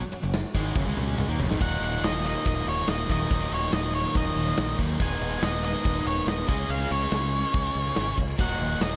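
A dark, fuzzed-out lead guitar enters up front at 1.6 s over a driving, brooding classic rock groove in Eb minor at 142 BPM, where a punchy, big-room drum kit with bright cymbals plays a fill just before it, a growling overdriven fingered bass drives the low end, a warm spring-reverbed rhythm guitar and a tight, bright distorted guitar play picked riffs in the background, a lightly overdriven tonewheel organ holds very quiet sustained chords through a slow rotary speaker, and a boxy picked parlour acoustic guitar with finger squeak slips in faintly at 8.4 s near the close of this cut from a longer piece.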